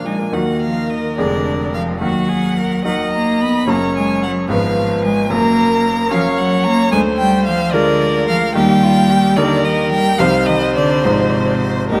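Spirited and lively, this quick classical-period movement for piano quartet moves in a rubato 6/8 at 73 BPM in dotted quarters, tuned slightly low with A4 at 436 Hz. It opens in a minor-leaning harmony around Eb minor and Gb before settling into Eb major from 6.9 s, passing through Cm and Fm7/Ab near the end of this cut from a longer piece. A clear, up-front violin carries the melody with smooth, even bowing and vibrato, while a second violin with a rich, close tone and a focused cello with vibrato play supporting lines beneath it. A bright, natural concert grand piano, brilliant with deep bass, provides the accompaniment across its broad range. All four parts play throughout, set in a moderate concert hall reverb.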